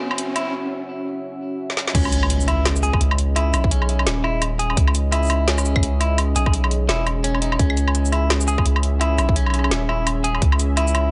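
A dark, detuned analog pad with chorus and sidechain pumping holds sustained chords beneath compressed, clean electric guitar arpeggios under delay and a filter sweep, while a high-passed drum and bass kit of woody snare, metallic hats, shaker, woodblock and crash cymbal joins almost at once and a brief background riser gives way to a break and a drum fill at 1.7 seconds, before this cinematic, heavy half-time drum and bass excerpt at 170 BPM in C# minor drops at 1.9 seconds with an electronic impact, a tight layered electronic kick and a deep, tube-saturated 808-style sine bass sitting up front in light reverb.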